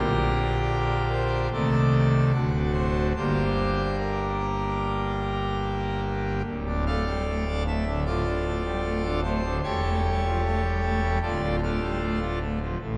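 A full pipe organ opens on a G minor chord, its mixtures giving a brilliant, majestic edge to a dark, solemn chorale-style classical passage. At a steady 75 BPM in 4/4 with a straight feel, the solo organ moves through a romantic voicing from D1 in the pedal depths up to F5, passing from G minor through a diminished chord and D7 before settling back on G minor. At 6.5 seconds the music turns to D minor for its second half, leaning on an A7 chord before resolving home to D minor by the close at 13.0 seconds. Although the instrument sits up front, the listener seems placed further back in a scoring-stage room whose two-second reverb lets each chord bloom and hang in the air. Tuned slightly high at A4 = 441 Hz, this brief passage is cut from a longer work.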